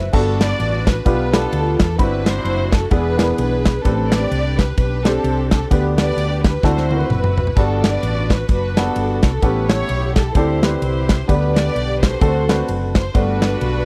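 A swung eighth-note groove in four drives this short, uptempo gospel passage, cut from a longer piece, with a soulful, hopeful mood. The drum kit sits up front with an airy, polished small-room sound, a tight kick, a medium-tuned snare and ride, crash and toms, and it marks the midpoint with a fill from 6.6 to 7.6 seconds. Underneath, a hollow-body short-scale electric bass, fingered and amped, gives a dark, round low end. A baby grand piano supplies present accompaniment across the full range of the passage. The melody is carried by a warm, intimate string section, bowed sul tasto with vibrato and a smooth top, over lush extended chords that move from Gmaj9 through E7, Am11 and D9 before settling back on Gmaj9. The sound is dry and close in a 1970s studio style, touched with light reverb.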